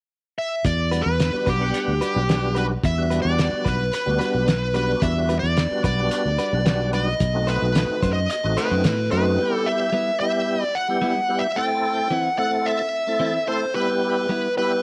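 Straight-eighth soul blues in E minor at 110 BPM, this mournful, soulful passage cut from a longer piece sets a smooth, overdriven lead guitar melody up front over a warm tonewheel organ with chorus vibrato and a slow rotary speaker, while a bright, compressed clean guitar recorded direct adds picked stabs. A round, dark fingered bass and a muffled, cloth-damped drum kit with a fat snare, tight kick and gritty, rolled-off top carry the groove through Em9 and B7b9 before dropping out near 9.4 s. The lead, organ and stabs then continue alone over Em and Am, all in a light studio reverb.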